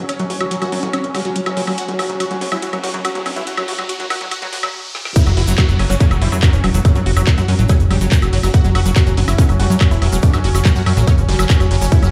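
Driving and alien, this psychedelic trance excerpt opens with a build-up in which a filter sweeps over a squelchy, resonant acid bass, a punchy detuned supersaw stab, a bubbling stepped-filter texture, a funky plucky analog bass and a drum kit with a woody snare, metallic hats, handclaps, crash and woodblock, while a riser climbs behind them until a brief stop and a drum fill at 4.9 seconds give way at 5.2 seconds to a drop where a tight, up-front electronic kick and a grainy egg shaker join in, all set in a bare, reverberant room.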